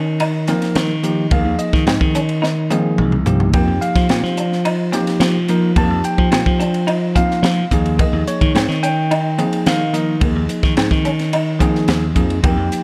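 The production is dark and warm, with light reverb around a crisp, polished studio kit. This funky jazz fusion excerpt moves at 108 BPM in a straight 4/4. The harmony runs from Ebsus4 to F9sus4 at 3.5 seconds and Eb9sus4 at 7.7 seconds. A growly, punchy slap bass sits up front from the very start, direct and amped. Beside it, a bell-like tine electric piano carries clean accompaniment from 0.5 seconds. The airy drum kit pairs a punchy kick with a high-tuned snare and dark cymbals, and plays a fill between 2.4 and 3.5 seconds. In the background, a picked semi-hollow electric guitar adds warm, clean, hollow-bodied stabs coloured by analog chorus, and the whole passage feels funky and bright.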